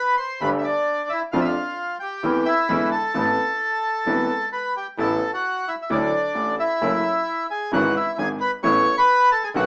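A small-speaker sound with a wet studio reverb captures a band playing live in one room on this passionate, sultry tango fragment, taken from a longer piece at 132 BPM in 4/4 with a rubato feel. A reedy, vintage, band-limited bandoneon sits up front and carries the melody from the first moment, joined at 0.4 seconds by a clear concert grand piano with a smooth, deep bass in the accompaniment and a single bowed double bass, bright and biting, playing with intense vibrato from a distance. The harmony moves in A minor through chords such as Dm7/F and E7, then turns to A major at 5.0 seconds, passing through Dadd9, F#m7 and C#m/G# before settling on Aadd9.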